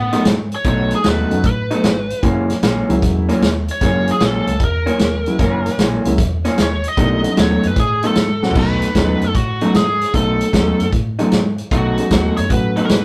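Electric blues shuffle at 152 BPM in B mixolydian, swaggering and gritty and cut from a longer piece: a biting, overdriven lead guitar solos from the start over a slightly broken-up, lo-fi riff from a second guitar through a small old amp, a round, foam-muted fingered bass and an up-front vintage drum kit with dark cymbals and a tight kick, while a woody upright piano with audible action noise joins at 1.3 s, the chords moving from B7 to F#7 and back before a drum fill at 8.4 s, captured as a rough rehearsal-room recording with light reverb.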